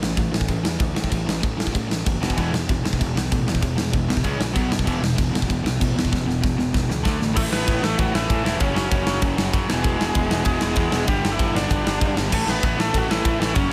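Punk rock at a driving 193 BPM in A major, upbeat and rebellious, cut from a longer piece, with an up-front acoustic drum kit with a punchy kick and a growly, fuzzed, direct-amped electric bass moving through a progression of power chords such as A5, E5 and G5 under a crunchy overdriven guitar riff set in the background. A second, warmer overdriven guitar joins the riff at 2.4 seconds, and a drum fill from 6.1 seconds leads into a new section at 7.4 seconds, where a biting, bright lead guitar takes up the melody. The drums carry bright cymbals and a medium-tuned snare in a stone-room sound, and light reverb colours the mix.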